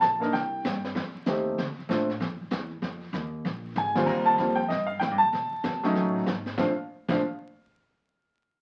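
Piano, pizzicato upright bass and brushed drums start together through the crackle of a very old 78 rpm record, setting a relaxed, warm jazz trio swing in this short cut from a longer piece. The woody, natural piano sits up front carrying the melody over steel-string bass and a small-room brush kit with dark cymbals, a high-tuned snare and a boomy kick, all softened by a wet studio reverb. A drum fill from 3.8 to 4.1 seconds leads the trio into a new section, with the chords moving through colorful extended harmonies before settling back at 6.6 seconds.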